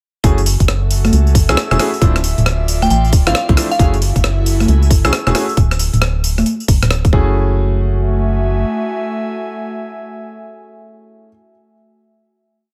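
The sound is dry and close, with little reverb, giving this soulful, late-night two-step garage piece an intimate feel. A tight, layered electronic kick and a gritty, pitched-up breakbeat kit of congas, closed and open hi-hats, rim clicks and tambourine drive the swung groove. Up front, a dark, hollow FM bass with an organ-like tone plays a syncopated riff, roughened by tube saturation. A clear, vintage grand piano plays short syncopated chord stabs through a delay over an airy, breathy pad whose slowly shifting chords pump with the kick, and a glassy, crystalline synth bell adds brief warbling phrases with chorus, tremolo and delay, while a silky string machine holds a high note in the background for a moment. The drums stop by 7.2 seconds and the bass by 8.6 seconds, leaving piano and pad to ring out on a final chord.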